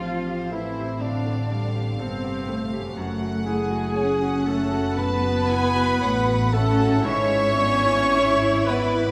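Tender and uplifting, this rubato cinematic excerpt carries a pure, floating violin melody over softly bowed sul tasto strings, with a dark violin section, hollow flute, mellow clarinet and oboe weaving second lines in the background, a clear grand piano and viola section in accompaniment, sustained chords from a French horn section, very quiet ringing harp arpeggios, and a foundation of dark cellos and woody double basses, all bathed in a wet recital-hall reverb.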